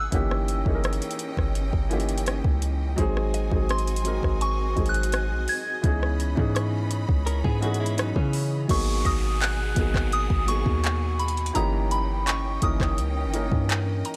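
A deep, boomy 808-style bass sits up front in this short excerpt of contemporary R&B, its sine tone carrying a noise layer and a fast attack that decays away beneath a smooth, electronic drum kit of soft kick, metallic hi-hats, handclaps, rim clicks and crash cymbal. Above them, a pure, gentle FM synth bell with chorus carries the melody, while a felt-muted upright piano adds mellow, intimate accompaniment and a lush studio string section holds bowed chords with vibrato and a sidechain pumping effect. From 3.3 seconds a woody, round synth pluck with chorus and tape echo joins in the background, and a clean, direct-recorded electric guitar briefly plays picked, compressed arpeggios from 7.3 seconds. At 8.7 seconds the piece moves into a new section as an electronic downlifter sounds in the background over extended, jazz-tinged minor and dominant chords. The mood is longing and late-night, with a dry, gritty hardware sound and little reverb.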